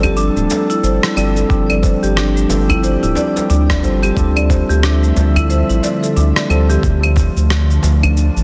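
A dense, heavily limited mix sits in a lush hall reverb for this hypnotic, meditative stretch of organic downtempo with a swung sixteenth-note feel, cut from a longer piece and moving from G5 to Dm9. A round, dark analog bass sits up front, pumping with the sidechain alongside a mellow tine electric piano and an airy, breathy pad with chorus, while a woody marimba plays arpeggios through digital delay until 6.8 seconds. Gritty, overdriven electronic claves, cabasa and rim click run throughout over a very quiet, deep djembe, and a thumpy, compressed kick drum enters at 1.5 seconds and drops out at 7.3 seconds.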